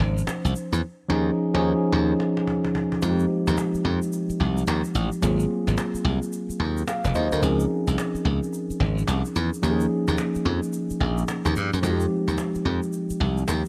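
A swung sixteenth-note groove in 4/4 drives this bouncy, slick new jack swing R&B excerpt, cut from a longer piece. Up front sits a mellow tine electric piano, clean and direct, voicing rich jazz chords such as Dbmaj9, Eb9sus4, Fm9 and Ab13, while a glassy slap bass with a bright, electric edge holds down the low end. A woody cajon with faint snares gives the beat a vintage, band-limited character, and a grainy egg shaker adds a bright acoustic sparkle with a live-room feel in the background. Early on, the band hits a shared accent from 0.8 seconds, and a drum fill and electric piano fill lead into the main section at 3.0 seconds, where the chord cycle settles in. The mix carries a small room reverb and some lossy compression artefacts.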